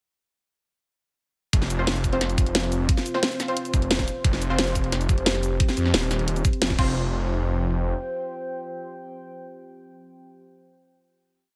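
A punchy, nasal synth stab with an orchestra-hit bite cuts through this short, dark and futuristic piece of technical drum and bass at 177 BPM, firing sparse, echoing chord stabs that keep moving one shape in parallel from 1.8 seconds until the close at 11.0 seconds, its bright tail carried by built-in reverb and dub echo. The drop lands at 1.5 seconds on an F5 chord, where an up-front electronic kick with a knocking, broken-beat feel joins a tight, produced kit of cracking snares, closed hats, cabasa and crash. Underneath, a thick, saturated detuned saw bass growls in chopped phrases, its sound fattened with chorus and pumping against the kick. A deep, moody analog pad with a sub octave fades in slowly behind everything, holding sustained chords through chorus and phaser with the same pumping motion. After a band accent at 6.6 seconds the drums drop out, and the final hit leaves the pad and stabs ringing in a light digital ambience.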